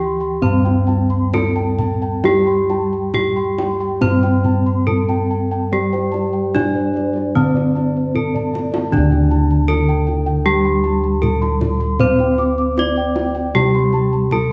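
A serene, shimmering Javanese gamelan passage in D slendro opens at a calm 66-78 BPM in 4/4. A forward, horn-mallet bronze metallophone carries the melody over a wooden-mallet metallophone accompaniment with paired-tuning beats, while round, up-front bossed gongs hold the bass and soft, padded bossed gongs and an airy background metallophone ripple through high arpeggios. A tight, band-limited kendang joins at 0.4 seconds and plays a fill from 8.2 to 8.9 seconds into a new section, all within a moderate recital-hall reverb in this piece cut from a longer work.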